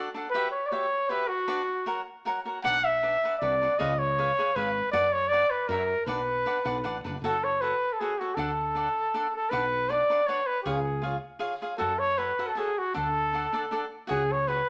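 A lilting 3/4 pulse at 157 BPM, with a gentle swing on the eighth notes, drives this dramatic, passionate mariachi-style Mexican folk passage cut from a longer piece. A warm trumpet carries the melody up front from the very start, playing in a classical style with light vibrato and a present, soloistic tone that ranges from F#4 to F#5. Beneath it, a crisp, picked acoustic cavaquinho supplies the accompaniment, while a woody fretless electric bass enters at 2.7 seconds with a growly, round, hollow-body sound taken direct. The opening section sits in B minor, moving through chords such as Bm, C#7 and F#7, before the music shifts to F# minor at 7.2 seconds, cycling through F#m, D, Bm and C# and closing on a C#sus4. A moderate large-studio reverb gives the group a sense of space, with the trumpet clearly leading over the softer strings and bass.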